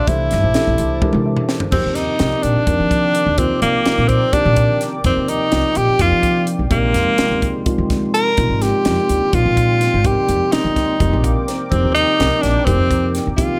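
A clear tenor saxophone leads this intense, funky electric jazz fusion excerpt, its up-front solo marked by light vibrato, soft attacks and scooped notes over a brisk 252 BPM pulse in 7/8 and F minor. A crisp fusion drum kit with a high-tuned snare and punchy kick joins a woody, thumpy pizzicato upright bass and a mellow, intimate grand piano with audible action noise, while a moody, detuned analog pad with chorus sustains chords in the background. Drums and piano share a fill from 1.0 to 1.7 seconds, the piano adds another at 11.0 seconds, and the harmony moves through C13, F13sus4 and Bb13sus4 chords in a small room.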